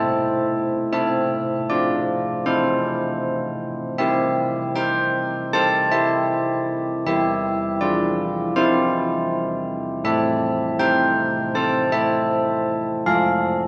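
Carillon bells ring out alone in this festive yet serene classical excerpt for church bells at 79 BPM in a straight 4/4, their bronze tone, minor-third overtone and worn iron clapper giving a vintage, band-limited character as they sit up front while the listener seems placed further back in a wet church reverb lasting 3.6 seconds, tracing a harmony that moves from Am through C and C/E back to Am before touching F at 13.0 seconds.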